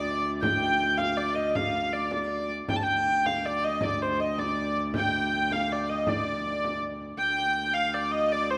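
A dark, woody hurdy-gurdy carries the melody up front over a ringing, gut-string viola da gamba drone on a low D in this ancient, driving medieval dance in 6/8 at 106 BPM in D phrygian, with a small, bright frame drum tucked in the background until 7.1 seconds and the whole ensemble bathed in a wet scoring-stage reverb.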